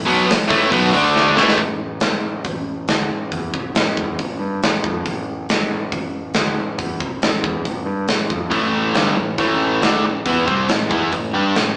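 Heavy, driving hard rock cut from a longer piece, where three picked electric guitars (a high-gain distorted one set in the background, a dark overdriven semi-hollow one up front, and a bright double-tracked tight distorted one) open on a riff over A5 and D5 until 1.6 seconds, alongside a growling, round overdriven bass and a big, punchy acoustic drum kit whose fill at 1.2 seconds leads into a section carried by bass and drums alone until the high-gain and semi-hollow guitars return at 8.5 seconds, all caught as a band playing live in one room with moderate reverb and a small speaker sound.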